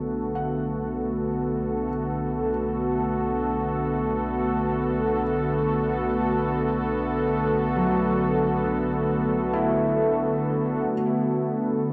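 A smooth, detuned sawtooth pad opens this ambient fragment up front, holding sustained chords on Bm7 with a soft attack, long release and chorus, while a felt-muted upright piano and a deep sine sub bass fade in beneath it from the start until 10.9 seconds. The mood is warm and peaceful, floating in free time with the tuning set at A4 = 441 Hz. The piano plays mellow, intimate arpeggios through thin felt, its audible action noise adding a close, homespun texture, and it carries cassette tape colouring and tape echo. The round, mellow sub bass sits low on a single B1 and drops away at 10.9 seconds, leaving pad and piano to carry the closing second through to 11.9 seconds. A wet spring reverb and the grain of a home cassette recording wrap the whole in a soft, hazy space, and the passage is cut from a longer piece.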